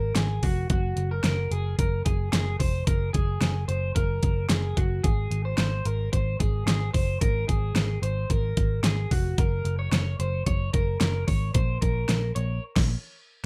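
A straight 4/4 pulse from an overdriven pop drum kit with a knocking kick, fat snare and crash drives this wistful, bittersweet jangly indie pop cut, where a dark, foam-muted vintage picked bass sits up front beneath a twangy, slightly broken-up electric guitar playing arpeggios with subtle chorus, moving from Gbadd9 to Bbmadd9 at 11.5 seconds before a band accent at 12.6 seconds, all in a dry, rough home-demo mix.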